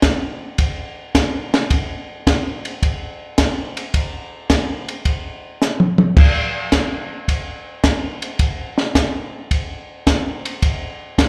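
A swung 4/4 pulse at 108 BPM drives this greasy, soulful jazz excerpt, with the eighth notes carrying a 69% swing feel. A compact cocktail drum kit plays throughout the full 11.3 seconds, using crash and ride cymbals, hi-hat, kick, snare and toms. The kit sounds dark and smooth, with a punchy kick, a high-tuned snare and a rolled-off top, and it sits up front in the mix. A short drum fill arrives at 5.6 seconds and wraps up by 6.2 seconds before the groove carries on. The recording has the feel of a live gig heard through the venue's PA, and a moderate plate reverb blends with the club's own ambience.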